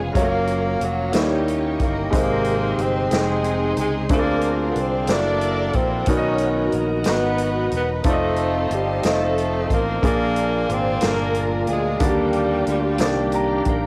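A slow, straight 6/8 sway carries this jubilant, reverent gospel excerpt, with a swinging big-band drum kit up front offering a punchy kick and medium-tuned snare over a fingered electric bass. A polished grand piano with long sustain leads the accompaniment, while a breathy tenor saxophone with vibrato and tape echo shares the melody with a lush, intimate bowed string section. Beneath them, a very quiet, bright tonewheel organ with key click and slow rotary speaker and a distant second string section with portamento hold sustained chords, and piano and organ both add fills from 13.0 s, all heard as a home cassette recording in light small-room reverb.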